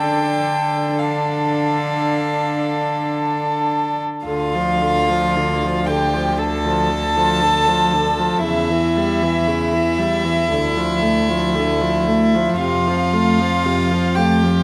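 A string quartet begins together in a slow, melancholic and elegiac classical movement in D minor at 53-59 BPM with a rubato feel, where an up-front violin sings a pure, airy melody played sul tasto above a second violin line and a full-bodied viola accompaniment, while a close cello gives a clear, slightly nasal bass, each part bowed by one player with a soft, floating attack in a wet concert hall reverb as the excerpt moves from Dm through C#dim/E and back before settling on F.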